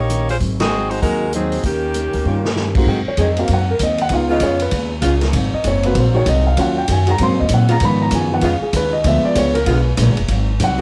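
Captured on a home cassette with light reverb, this joyful, energetic big band swing excerpt moves at 194 BPM in Ab mixolydian, driven by a woody, thumpy pizzicato upright bass and a roomy, distant drum kit with a boomy kick. A bright, vibrato-laden saxophone section opens with the melody over a picked, full-bodied acoustic guitar tucked in the background, and a drum fill at 2.3 seconds ushers in the next section. From 2.9 seconds an intimate concert grand piano, with audible action noise and deep bass, takes an up-front solo while a clear, close-miked saxophone section holds sustained chords behind it.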